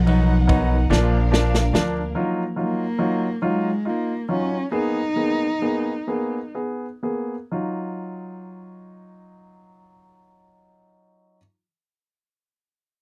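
A dark, bowed cello carries the melody up front in this melancholic, aching six-eight pop ballad fragment, over a clear baby grand piano that plays on until 11.4 seconds, while woody pizzicato upright bass, lush background strings, a clean twelve-string electric guitar and a punchy natural country drum kit with a fill sound only in the opening seconds before the music slows from 2.2 seconds, captured in a dry, close 1970s-style studio sound.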